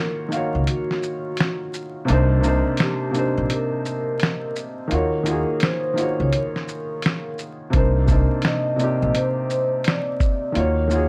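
A hazy, nostalgic lo-fi hip hop fragment in C minor at 85 BPM opens with a mellow, ringing vibraphone melody on soft mallets with slow motor vibrato and a muted, intimate felt-muted upright piano, both filtered and mellow, before a compressed, muffled sampler-style drum kit with thumpy kick, medium-tuned snare, hi-hat and shaker enters at 0.3 seconds and a woody, dark pizzicato upright bass on gut strings arrives at 0.5 seconds, all under moderate studio reverb and vinyl crackle as the chords move between Ebm9 and Cm9 on a swung 16th-note feel.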